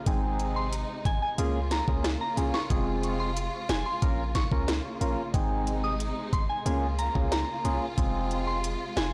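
Dancehall in F minor at 91 BPM, this short cut from a longer piece feels hypnotic and tough, with a straight 4/4 groove. The electronic island pop drum kit sits up front with a knocking kick, sharp snare, crisp hi-hats and rim clicks, carrying a tape-warm character, while a deep, boomy 808-style bass built on a sine tone with a noise layer anchors the low end. A hollow, nasal organ stab with a wave-folded edge and chorus plays percussive accompaniment, and a lush symphonic string section holds bowed, vibrato-laden chords that pump against the beat. From 0.6 seconds a soft, pure FM bell carries the melody with a warbling, vintage tone, treated with chorus and delay. The chords cycle through Ab, Db6, Fm and Bbm, and the whole recording has light reverb and a blown-out, overdriven sound.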